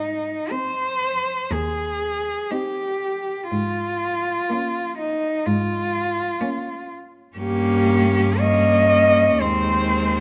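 In a flexible, rubato 4/4, this serene and lyrical classical fragment for cello ensemble unfolds as a rich-toned solo cello sings the melody up front with expressive portamento and soft attacks, over a clear, even cello bass. From 0.5 s, a second clear, smooth cello adds a quieter inner line that still sits up front, and another rich cello fills in the accompaniment, all four bowed with vibrato. The close, detailed sound sits in a moderate recital-hall reverb, with some lossy compression artefacts.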